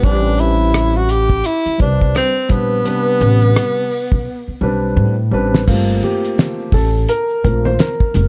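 Cool and nocturnal, this jazz-hop excerpt sets a breathy tenor saxophone with vibrato and scooped notes over a mellow concert grand piano, woody pizzicato upright bass and a cloth-damped, thuddy drum kit with a fat snare, until a drum fill hands off at 5.7 seconds to a piano solo joined by a ringing tube shaker and congas in the background, all in a dark, small-room production.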